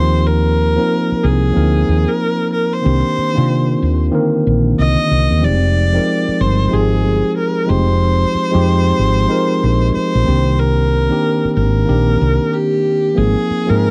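Dry and close, this recording has the intimate sound of a 1970s studio, with little reverb around the instruments. It is a soulful, sultry neo-soul R&B passage at 93 BPM in 4/4 with a swung sixteenth-note feel, cut from a longer piece. A woody fretless electric bass sits up front, growly and punchy with an amped, hollow-body character and analog chorus, carrying the low end throughout. A clean tine electric piano, heard through its built-in speakers, supplies the accompaniment over chords such as Eb69, Cm7 and Bb13sus4/F, reaching Ab6 at 13.2 seconds. Above them, a single bowed viola carries the melody with a focused, clear tone and vibrato.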